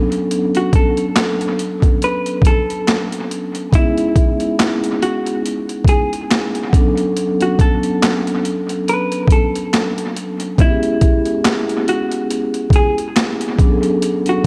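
A gritty, pitched-down boom bap drum kit with a thumpy kick, high-tuned snare, handclaps and hi-hat sits up front under overdrive and analog delay alongside a mellow, ringing soft-mallet vibraphone with slow motor vibrato and cassette-tape coloring that opens the excerpt playing Bm9 and C#m7 chords, while a dark, clean hollow-body jazz guitar carries a quiet melody from 0.6 seconds in this hazy, melancholic lo-fi hip hop excerpt, all swung and set in a moderate echo-chamber reverb.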